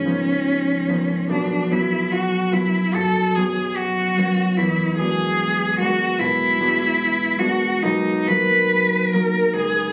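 Mysterious and hazy, this short classical, impressionist duo moves at a rubato 74 BPM in 4/4, with a focused, bowed solo cello carrying the melody up front with vibrato over a ringing, thumb-plucked concert harp accompaniment, drifting through C#9, Bsus2, E9 and Bmaj7 chords in a phone recording of the room with light club reverb.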